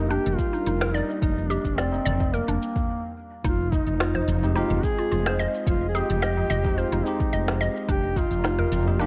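A mellow duduk with folk-style vibrato opens this meditative, earthy organic downtempo piece at 108 BPM in F dorian. It sits up front over a very quiet, smooth analog pad and a round, punchy fretless electric bass holding F1 with analog chorus and sidechain pumping. Almost at once, a woody, warbling FM synth pluck spins arpeggios through chorus and tape echo. It is joined by an electronic shaker and snare in studio reverb, a high-tuned, ringing tabla in the background, and a deep, overdriven electronic kick re-recorded in a large room. The groove sits in 4/4 with a light sixteenth-note swing, and a short break at 2.9 seconds leads from a rootless Ebmaj7/F to Fm7 at 3.4 seconds. Shortly after, a clean tine electric piano enters at 4.4 seconds through its built-in speakers with sidechain pumping and tape echo. The duduk carries a digital delay, and light reverb with digital ambience frames this cut from a longer piece.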